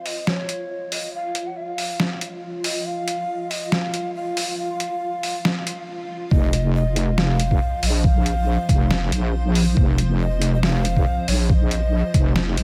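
A heavy, resonant wobble bass with detuned square and sine tones and a chorus sheen arrives up front at the drop at 6.3 seconds, joined by a gritty, thumpy overdriven kick in this brooding deep dubstep cut from a longer piece, set to a half-time, lightly swung feel. From the opening, a breathy bamboo shakuhachi with vibrato and chiff carries the melody through a low-pass filter and dub echo over a cloudy, slowly evolving granular pad whose filter sweeps through the build-up. A pitched-down, compressed sampler-style kit of hi-hat and medium-tuned snare, overdriven and in a roomy ambience, runs throughout, with a short break just before the drop.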